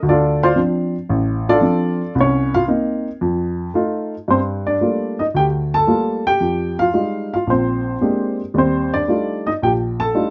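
Solo jazz on a dark baby grand piano, relaxed and playful, moving at 113 BPM in 4/4 with a swung eighth-note feel, tuned to A4 = 441 Hz. The piano carries everything alone, ranging from A1 to A5 with a mellow, intimate tone, short sustain and audible action noise that keeps it natural and up front. The opening passage runs through Dm7, Cm7 and F7, and the harmony shifts at 4.3 seconds into a richer run of Gm9, Fm9 and Bb13 before settling on Ebmaj9#11. Light reverb surrounds the instrument, and the production is dusky and warm, with the top end rolled off above 7.5 kHz. The clip is cut from a longer piece and lasts about 10.3 seconds.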